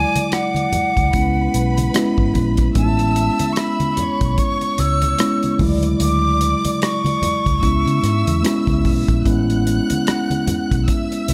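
Heard through light reverb and studio ambience, this lush, romantic cut from a longer piece of 1970s-style soul in A major moves at 74 BPM with a gentle 16th-note swing, as an airy, expressive concert flute with vibrato and a soft attack carries the melody until 8.9 s over a woody bowed string section, an up-front mellow tine electric piano, a round, foam-muted fingered electric bass, a dark small-room drum kit with punchy kick, hi-hat and rim click, and low-tuned congas sitting in the background.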